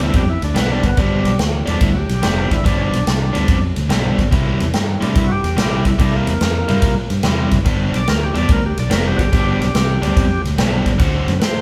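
A swung shuffle at 144 BPM drives this rollicking, soulful electric blues excerpt in G mixolydian, where an up-front big-band drum kit with punchy kick, snare and ride backs a picked, overdriven guitar riff, a growly fingered electric bass, and a thick, gritty tonewheel organ with key click turning through a slow rotary speaker, the band playing live together in a large studio room as the chords move from G7 to C7, back to G7 and onto D7 at 11.0 seconds.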